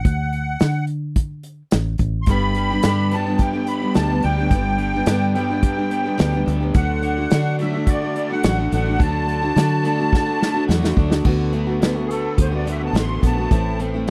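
A straight 4/4 pulse at 107 BPM from an up-front acoustic drum kit played with bundle sticks, its punchy kick and dark cymbals joined by a round, foam-muted fingered electric bass, drives this dusty, wistful folk and heartland rock piece cut from a longer work, where a reedy, shimmering musette accordion carries the melody over a picked steel-string acoustic guitar with audible finger squeak and a crunchy, double-tracked overdriven guitar riff that both enter at 2.3 s, moving from D to G and back before a drum fill at 10.1 s leads into an accordion solo at 11.3 s, all captured in a dry, close 1970s-style studio sound.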